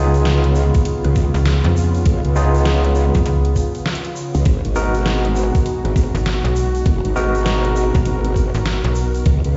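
Growling, saturated bass sits up front in this playful, funky glitch hop excerpt at 100 BPM in 4/4, its formant-filtered wobble running from the start alongside a snappy FM bass with a metallic attack that joins at 1.3 seconds. A knocking electronic kick enters at 0.7 seconds, up front, while a dubstep kit supplies a deep snare, rim clicks and metallic hats, all swung on the sixteenths, with a grainy, bright egg shaker faint in the mix. An overdriven tine electric piano through a combo amp fires barky stabs with fast tremolo and delay, pumping with sidechain compression. Behind it, a smooth, detuned sawtooth pad holds sustained chords with chorus and a vintage 12-bit sampler grit, also pumping. The harmony moves from C#7 to G#m7 at 4.5 seconds in G# dorian, and the whole mix sounds played through a big system in a bare stone room, with vinyl crackle and a dulled top end.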